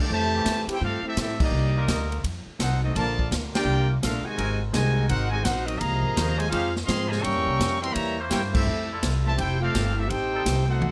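The rhythm swings at 168 BPM in 4/4, with a big-band drum kit of punchy kick, medium-tuned snare, hi-hat, ride, crash and toms sounding airy and polished, while a woody, thumpy upright bass plays pizzicato beneath it from F1 to A2. This energetic, brassy big band swing in F major is cut from a longer piece, and the whole band hits accents at 1.3, 3.5 and 8.5 seconds. Up front, a brilliant, tight trumpet section carries the melody with light vibrato and a vintage jazz edge, ranging from Bb3 up to Db6. A mellow trombone section plays a second line, and further back a muted trombone section holds nasal straight-mute chords. The harmony moves richly through chords such as Fmaj9, F7b9, Dbmaj9 and C7b9 before landing on Am7b5. Close, detailed microphones and light reverb keep the sound clear and present.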